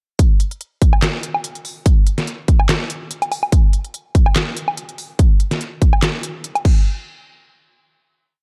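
Dark, dry and tape-warm, this heavy, menacing dubstep piece at 144 BPM in 4/4 drives a half-time, lightly swung drop from 0.2 to 6.9 seconds, where an up-front, punchy layered electronic kick sits well above a produced drum kit of deep snare, crisp hi-hats, handclaps, low woodblock and crash cymbal, before both stop at 6.7 seconds and a final hit closes the track at 8.4 seconds.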